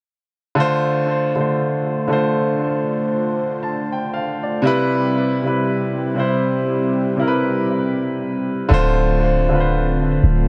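Late-night and longing, this slow R&B fragment, cut from a longer piece, moves with a lazy swung feel. A baby grand piano carries the accompaniment up front, its natural tone ringing with long sustain and trailed by analog delay. Beneath it, a smooth analog pad built from detuned sawtooth holds sustained chords, fading in slowly and shimmering with chorus. The harmony rests on Dm7, shifts to Cmaj7 at 4.6 seconds, then returns to Dm7 as a new section opens at 8.7 seconds, where a deep, boomy 808-style bass enters with a sine-like fast attack and a decaying, mellow body. A moderate spring reverb and heavy echo give the mix a hazy, spacious glow.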